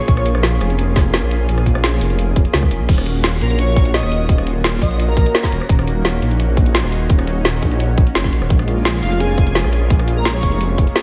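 Set in a light digital ambience, this soulful, rolling liquid drum and bass excerpt pairs an up-front tight electronic kick and a kit of woody snare, metallic hats, rim clicks and crash with a menacing, saturated detuned saw bass that evolves through a filter swell, while a thick, chorused unison pad pumps beneath an airy, dreamy lead whose soft fragments drift through diffuse delay at the very start and around 3.4 and 9.0 seconds.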